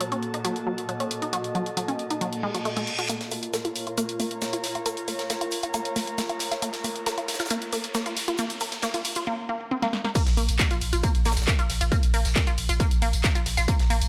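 Opening at once, a squelchy, resonant blip pluck plays a bright riff through phaser and delay, sitting up front over a punchy, tape-warm analog drum machine of snare, claps, hats, ride, crash and tambourine, while a swarming, detuned drone and an airy, breathy pad with chorus fill in around it on a Gb minor chord. This is driving, industrial peak-time techno at 136 BPM in Bb harmonic minor, cut from a longer piece. A reverse cymbal at 2.4 seconds leads into a build-up on Bb minor, where the drone drops away and a tight metal kit of hats, shaker and a medium-tuned snare joins in the background of a big room, with a riser, a filter sweep on the synth arpeggio, a swell and a drum fill pushing toward the drop. At 10.2 seconds a heavy, layered electronic kick lands up front, joined by a thick, saturated sub bass on Bb that pumps against it, and the harmony settles on a bare Bb5. A moderate digital room reverb sits around the parts, giving the track a hard, pumping energy.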